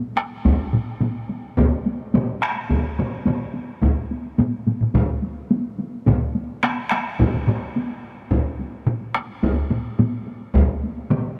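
The recording has a light reverb and an acoustic, roomy sound, with several layers of drums sitting at different distances. This is Japanese traditional music for taiko drum ensemble in a straight 4/4, and its mood is powerful and ceremonial. One group, struck with heavy sticks, sounds as if it is in a small room and starts at 0.0 seconds. A second group, played with hard sticks, is close and up front, joining at 0.2 seconds. Two further groups, also on hard sticks, sound distant in a large room yet still prominent; one of them enters at 1.6 seconds and sits lowest in level. This brief cut from a longer piece stays in a single section throughout its roughly eleven seconds.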